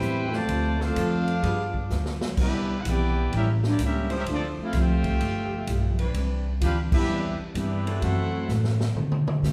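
Brassy and energetic, this big band swing excerpt in C major moves at 127 BPM with a swung feel, as a brilliant, tight trumpet section carries the melody over a clear, smooth-topped trombone section playing a second line, both phrased with jazz vibrato. A punchy, up-front drum kit with a medium-tuned snare drives the time, playing fills at 1.9 and 8.5 seconds, while a woody pizzicato upright bass and a dark, full-bodied picked acoustic guitar, with audible finger squeak, sit beneath. A warm saxophone section adds sustained chords from 1.0 seconds, a band accent lands at 6.9 seconds, and the harmony runs through rich extended chords such as Am11, G7b9 and Cmaj9 before closing on B7b9, all heard from further back in a reverberant large studio.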